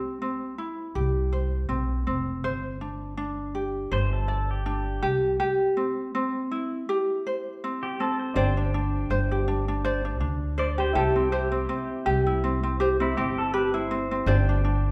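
Sunny and easy-going, this acoustic pop piece opens on a light, fingerpicked ukulele, joined at 1.0 s by a woody, growly pizzicato upright bass, both sitting up front over a gently swung feel and an unhurried alternation of C and Gsus4. From 3.9 s, a bright, twangy pedal steel guitar adds a clean second line of slide and volume swells, and at 8.3 s a polished upright piano with audible action noise enters in the background. A reverberant recital hall gives the recording a spacious, churchlike bloom.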